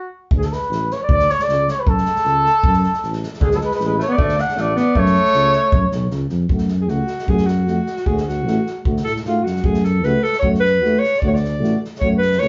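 A brisk 2/4 pulse carries this bittersweet, virtuosic Balkan brass band fragment, where a mellow, distant flugelhorn sings the opening melody with light vibrato over dark tuba and a roomy acoustic kit played with bundle sticks, before a clear, smooth-topped alto saxophone enters at 3.4 seconds and takes the solo from 6.5 seconds as a present French horn in the background and a close-miked euphonium join in a wet, live-in-one-room sound.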